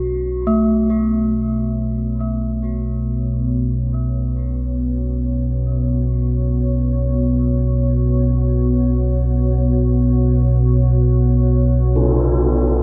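Drenched in a cathedral-like reverb that makes the space feel vast and cavernous, this dark ambient drone fragment rests on an ominous, rumbling low drone up front beneath a moody, detuned pad with chorus, while a bronze gamelan-type metallophone rings out smooth, mallet-struck arpeggios until 7.4 seconds, a pure, meditative quartz singing bowl hums very quietly with slow beating, and a dry, close tam-tam strikes at 12.0 seconds.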